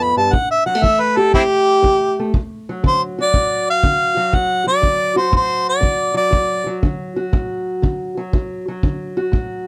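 Dry, this short cut of swaggering, laid-back acoustic country blues swings in 4/4. A jazz-style harmonica with a smooth top, light vibrato, tongue slaps and scooped notes leads up front, soloing over the opening 2.3 seconds before falling silent at 6.8 seconds, while a dark, boxy fingerpicked parlour guitar carries the accompaniment through 9.7 seconds and a tight, roomy kick drum keeps time beneath them.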